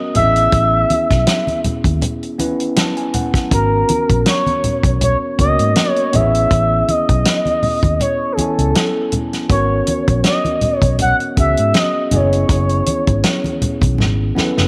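A clean tine electric piano opens this lush 1970s-style soul excerpt, with a dry, up-front soul drum kit joining almost at once at a relaxed 80 BPM in 4/4 with a light sixteenth-note swing. A dark, round, foam-muted fingered electric bass and close, bright, low-tuned congas settle in beside them, while the electric piano adds a short fill at 2.4 seconds. Over this sits a smooth, expressive synth lead, a mellow sawtooth-and-triangle blend with a soft attack, sustained notes, vibrato and chorus, placed forward in the mix. The kit has a fat snare, a tight kick and a rolled-off top, and a moderate spring reverb gives the whole groove a cinematic sheen. The harmony moves between Amaj9 and G#m11 before landing on F#9sus4, the lead drops out at 13.6 seconds, and a drum fill at 14.0 seconds carries the smooth mood toward the cut.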